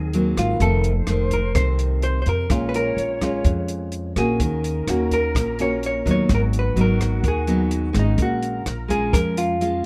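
A dark, softly reverberant production frames this short, melancholic bossa nova fragment at 127 BPM in straight 4/4, with an intimate, close feel. Up front, a full-bodied nylon-string guitar is fingerpicked with a deep classical tone and audible finger squeaks, while a woody, thumpy upright bass is plucked beneath it. A clean hollow-body electric jazz guitar, picked with a warm touch, carries the melody. A mellow small flute group sits in the background as an airy, expressive second line, with vibrato, soft attacks and rolled-off highs. A compact cocktail drum kit keeps things dry with hi-hat, rim click and a punchy kick, while the harmony moves from Ab9 through F7 into Bbm7, Ebm7 and Abm7 before returning to Bbm7.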